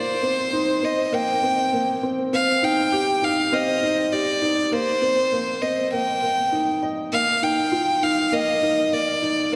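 A straight 4/4 pulse at 100 BPM carries this cinematic, intimate electronica fragment in C minor, where a dark, woody upright piano riff sits up front beneath a rich, close solo violin melody with light vibrato, soft attack and an airy sul tasto bow, both bathed in a wet concert hall reverb as the chords move from Cm7 through Cmadd9 back to Cm7 and settle on Bbsus4 at 7.1 seconds.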